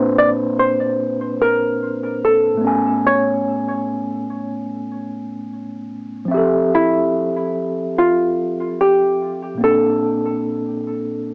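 A cassette home-recording character, a small room and a small-speaker sound give this cosy, mellow hip hop fragment its hazy frame, with a lightly swung sixteenth-note feel. A warm tine electric piano sits clean and up front under a low-pass filter and tape coloring, carrying chords that move from Bbadd9 through Amaj9 and Fmaj9 to Bbmaj9. From 0.2 s, a dark, fingered hollow-body jazz guitar carries the melody in an electric tone, also filtered and tape-softened and trailed by tape echo.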